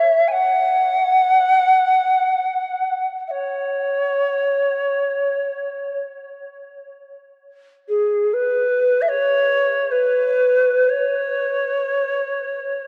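Haunting and spacious, this free-time meditative world piece, cut from a longer work, moves through C# minor pentatonic with tuning set at A4 = 443 Hz. A solo Native American-style cedar flute carries the whole 12.9 seconds, ranging from G#4 to G#5 with a woody, airy tone, vibrato and tongued notes, placed up front yet sounding distant. A huge, wet ambient reverb lingering 5.9 seconds and a dark, warm production wrap it in a vast, shadowy haze.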